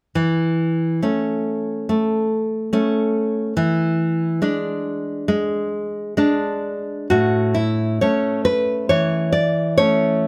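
Tender and nostalgic, this short excerpt from a longer romantic piece for solo classical guitar moves in a rubato 4/4 at 62-72 BPM in A major, with an up-front, fingerpicked nylon-string guitar of deep classical tone ranging from A2 to D5, passing from A/E to E7 at 3.6 seconds before settling on A at 7.1 seconds, all captured by close, detailed microphones with light reverb.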